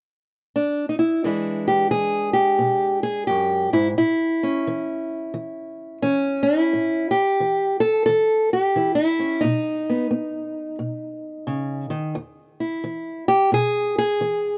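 A dry, close, small-room recording with a 1970s studio feel puts a lone fingerpicked acoustic archtop guitar up front, its woody, boxy tone and old strings carrying a swaggering, laid-back acoustic country blues with a swung eighth-note feel, moving through E7, A7 and B before settling on E as this fragment of a longer piece ends at 14.6 seconds.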